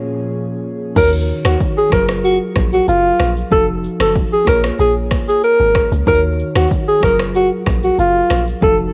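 A straight afrobeats groove drives this hypnotic, sultry fragment, carried by a punchy, layered electronic drum kit with crash cymbal, finger snaps, kick drum, rim click and shaker, re-recorded in a small room. The opening second is a short break where a bell-like, clean tine electric piano plays over an airy, detuned pad treated with chorus and a mellow, slow-attack sustain that fades almost as soon as it sounds. At 1.0 seconds the drums arrive together with a deep, round log drum bass whose dark, percussive notes decay, and a breathy alto saxophone takes the melody up front with pop-style vibrato. The electric piano continues its bright accompaniment throughout, comping through a cycle of lush minor-seventh and major-ninth chords with a tense dominant turn in the middle. The piano, pad and saxophone all carry a cassette-tape tint, and the whole home recording sits in a digital ambience before the fragment is cut off at 8.9 seconds.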